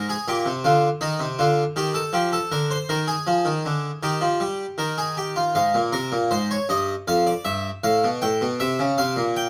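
A brilliant, plucked French-style harpsichord with three sets of strings plays alone throughout this short baroque-style two-part invention, its airy, full tone sitting up front in a straight 4/4 pulse. The mood is contemplative yet driving, with a second section beginning at 5.6 seconds before the fragment, cut from a longer piece, closes at 9.5 seconds. The sound is dry and closely recorded, catching fine detail in every note.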